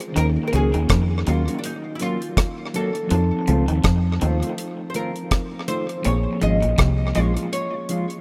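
Bittersweet and longing, this short lovers rock reggae excerpt in Bb minor sways at 82 BPM with a swung 16th feel. An up-front, dry reggae drum kit with a tight kick, hi-hat and rim click anchors a round, dark, foam-muted dub bass. A bell-like tine electric piano opens the excerpt, and from 0.2 seconds a woody, double-strung oud carries the melody over Ebm7, F7 and Bbm7, accompanied by a twangy, compressed guitar riff in the background and mellow, clean guitar stabs bathed in lush chorus. Tape echo touches the piano, drums, oud and both guitars, all within a roomy, rough home-demo mix.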